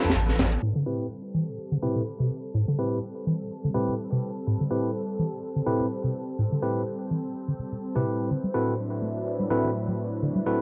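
A raw, gritty breakbeat excerpt in A minor at 125 BPM opens with a crunchy acoustic drum kit with a high-tuned snare, a thick saturated sub bass and a faint, warm electronic hi-hat that all drop away by 0.6 seconds, leaving a rubbery square-wave acid bass riff, clean stabs of tine electric piano through a combo amp with analog delay, and a lush, detuned sawtooth pad with chorus and phaser to carry a long filter sweep through the dry, lo-fi sampler-grit sound to 10.6 seconds.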